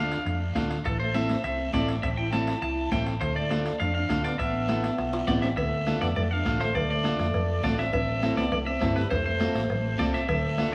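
A bright, twangy, up-front electric guitar with spring reverb carries the melody of this driving, danceable cumbia excerpt from the first moment, joined at once by a mellow French horn on a second line, a second slightly broken-up picked guitar in accompaniment and a dark, round hollow-body fingered bass, while a soft-beater bombo, raspy guiro and ringing timbales and cowbell slip in from the background at 0.1 seconds, damped high-tuned congas follow at 0.6 seconds, and a drum fill near 5.0 seconds leads into the second section, all heard from further back in a small room with a wet plate reverb and vinyl crackle.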